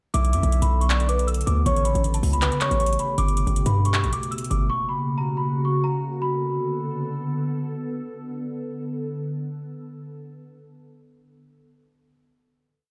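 The track sounds as if it is blasting through a big sound system in a bare room, with a large studio reverb that gives this short, eerie, menacing trap hip hop piece a cavernous, half-time feel. A bell-like celesta with hard felt hammers carries a delicate looping melody through digital delay. Beneath it, a round, dark octave-layered synth lead with chorus and vibrato adds a sparse counter-melody that drops out early. A glassy, ethereal FM pad with ensemble chorus and phaser holds the sustained Bm7, A7, Gadd9 and F# chords. Punchy, heavy 808-style bass sits up front with long sub-bass notes and pitch slides, while an overdriven trap kit adds handclaps and metallic sixteenth-note hats with fast rolls. The drums and bass drop away by about 4.7 seconds, and after the hook ends at 6.2 seconds the pad rings out a final Bm7 until 10.0 seconds.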